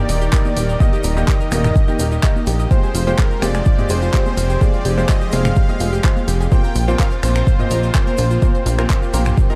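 Progressive house at 126 BPM in F dorian, this expansive, driving excerpt moves through Eb, Fmadd9 and Bbsus2 as a smooth, evolving supersaw melody with analog delay rides over sustained strings bowed sul tasto and a lush, detuned unison pluck arpeggio washed in diffuse delay. A bright baby grand piano with audible action noise adds stabs, while a punchy, wave-folded analog bass enters at 0.1 seconds and an up-front electronic kick at 0.3 seconds. A deep house kit of finger snaps, handclaps and hi-hat, a grainy tube shaker, and electronic congas and toms in the background fill out the groove, with sidechain pumping on the strings, pluck, piano, bass, hats, percussion and toms beneath light digital reverb.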